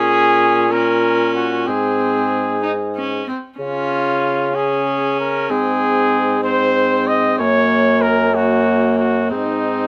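A courtly, stately renaissance-style consort dance in 6/8 at 63 BPM, tuned to A4 = 438 Hz, opens with all three parts together: a warm cornet carrying the melody with light vibrato, a reedy, gut-string bowed viola on the second line, and a dark, soft-attacked bassoon bass with a roomy, distant tone. All of it sits in light reverb as the harmony moves from Bbm through Ab, Db and Gb across this roughly 9.9-second cut from a longer piece.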